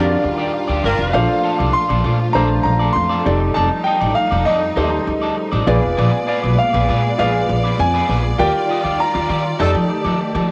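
A straight 4/4 pulse at 99 BPM drives this glossy, upbeat pop snippet in Bb major, where a clear, smooth concert grand piano carries the melody over a woody, thumpy pizzicato upright bass up front, an intimate grand piano accompaniment with audible action noise and subtle chorus, lush bowed symphonic strings holding sustained chords, and a slightly broken-up picked electric guitar riff, while a distant horn section with light vibrato and analog delay adds a background line only from 0.0 to 1.2 seconds and again at 9.6 seconds, the band hitting accents at the opening and from 8.4 seconds, all soaked in moderate spring reverb with the character of a home cassette recording.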